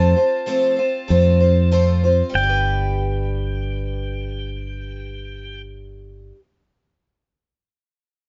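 A lightly reverberant recording with a soft, rolled-off top end carries this short folk rock and heartland rock fragment, an open-road piece at 96 BPM in a straight 4/4 and G major. Up front, a picked twelve-string acoustic guitar gives bright, boxy, shimmering octave-doubled accompaniment with audible finger squeak, while a fingered electric bass sits direct and warm beneath it as the harmony moves from F to G at 2.3 seconds. A clean, compressed pedal steel guitar played with fingerpicks carries the melody in a narrow high register with slide and volume swells, falling silent at 5.6 seconds ahead of the others.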